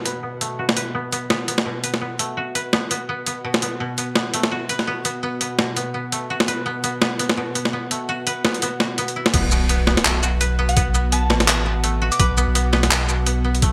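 A bright, 1980s-style digital production with light reverb frames this dark, spacious slice of half-time drum and bass, where woody, fingerpicked koto arpeggios with lo-fi 12-bit grit, delay and a filter sweep sit up front over a tense, detuned, string-like drone that pumps in the background. A gritty, pitched-down boom bap kit, overdriven and soaked in gated reverb, drives the swung groove with its high-tuned snare, handclaps, hi-hat, shaker and crash, while a very quiet downlifter opens the piece. At 9.3 seconds the drop lands with a faint impact, a thumpy overdriven electronic kick and a deep, saturated sub bass, and from 10.7 seconds a soft, pure FM bell adds a brief chorused, delayed melody.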